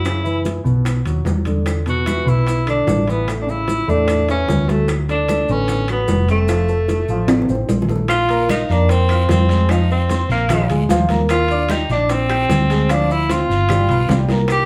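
Afro-Cuban jazz, danceable and sophisticated, with a clear, vintage tenor saxophone carrying the melody up front with vibrato over a natural-sounding baby grand piano and a dark, punchy hollow-body electric bass, while congas, ringing metal-shell timbales, softly played bongos, woody claves and grainy maracas fill out the groove, a raspy guiro joins at 8.1 s, short drum fills mark the section ends, and a club reverb places the band further back in the room.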